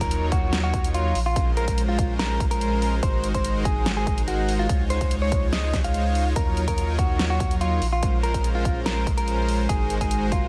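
A barely audible electronic impact opens this dreamy, bittersweet future bass cut from a longer piece, arriving at 0.0 seconds as a clean, direct-recorded electric guitar plays a bright, picked, compressed melody with digital delay over a fat, detuned sawtooth polysynth riff thickened by chorus. Beneath them sit a deep, saturated triangle sub bass and a layered electronic kit with a punchy kick and a huge snare plus hi-hat, driving a half-time feel at 144 BPM in Bb minor. The guitar, synth and bass all pump with sidechain compression through a dry mix as the harmony cycles through lush ninth chords from Ebm9 to Bbm9, Ab9 and Dbmaj9.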